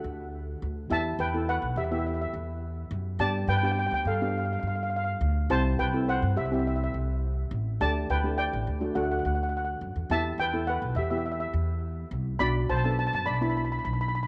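A bouncy, sunny calypso in straight 4/4 opens with a shimmering, mellow lead steel pan up front, played with soft rubber sticks over a double seconds pan accompaniment with a boxy small-room tone and a woody pizzicato upright bass on steel strings. The harmony moves through D, Em, G and C, then a Dsus4 gives way to D before returning to Em and closing on Bm, with moderate plate reverb around the parts. This is cut from a longer piece, and the lead pan and bass carry on to 14.3 seconds.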